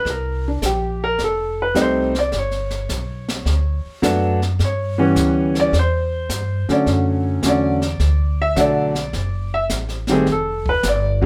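Jazz piano trio swinging in a sophisticated, live-room mood, as an open, long-sustaining baby grand piano takes the solo up front over a woody, pizzicato upright bass with steel strings and a brushed kit with a high-tuned snare and boomy kick that enters at 0.1 s, all under light reverb in this short cut from a longer piece.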